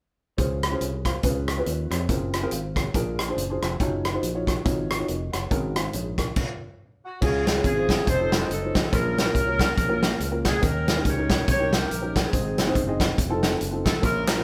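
A swinging 4/4 groove drives this uplifting, jubilant uptempo gospel excerpt, where a punchy, natural country drum kit sits up front beside a growly fingered electric bass and a dark, woody, slightly detuned upright piano, all pausing for a brief stop before a mellow, tight saxophone section with light vibrato takes the melody from 7.0 seconds in a roomy live-band sound, and a crisp group handclap lands at 14.3 seconds.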